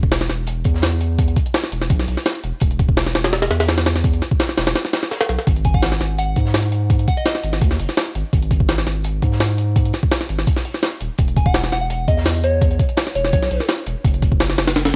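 A dry, gritty hardware sound with vinyl crackle and a small-room ambience frames this short, nostalgic and atmospheric drum and bass cut, moving at 168 BPM in a straight 4/4. Up front, a compressed, pitched-up, tape-warm jungle sampler-style kit drives the track with a thumpy kick, a high-tuned snare and hi-hat, all set in studio reverb. Beneath it sits a very quiet, dark, rolled-off breakbeat kit of acoustic hi-hat and snare, saturated and smooth. A deep, thick sine sub bass, saturated and sustained, holds the low end from D#1 to G#2 throughout. A soft, pure FM synth bell appears at 5.7 seconds and again at 11.4 seconds, its decaying tones between C#5 and G#5 coloured by chorus, phaser, 12-bit sampler grit and dub echo, while the harmony moves from E5 to G#5 and back before landing on F#5 at 14.0 seconds.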